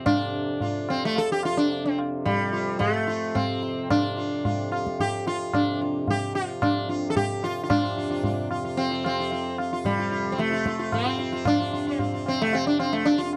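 Meditative and serene, this Hindustani classical passage is cut from a longer piece and moves in a seven-beat cycle that gradually speeds up throughout. The sitar carries the melody until 13.3 s, its plectrum-plucked tone buzzing and shimmering with sympathetic strings. It sits up front with a slapback echo. Beneath it, a hand-pumped harmonium holds a low, reedy drone with a breathing, nasal quality and a boxy small-room sound. The tabla enters at 0.1 s, high-tuned and ringing, heard close and dry. The music moves into a new section at 7.7 s, and the whole has the dry, close character of a 1970s-style studio recording touched by light reverb.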